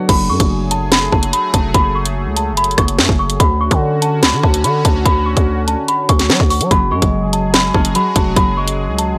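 An ominous, dark drill track in F# minor at 145 BPM, moving in a half-time feel, cut from a longer piece. Up front, the electronic drill kit drives it with a hard-clipped kick, sharp snare, bright hats, rim clicks and crashes, and the growling, buzzy 808-style bass sits alongside it. A small celesta carries a delicate, bell-like melody high in its register, its tone sweet yet dark through a low-pass filter and analog delay. Beneath it, a sweeping, resonant sawtooth pad holds airy, detuned chords with chorus, while a fingerpicked concert harp rings out under a low-pass filter, heard only from 0.0 to 2.3 seconds and again from 6.7 seconds. The chords shift from F#madd9 to Dmaj7 at 3.4 seconds and to F#sus2 at 6.7 seconds, all in a dry, gritty recording with transformer saturation.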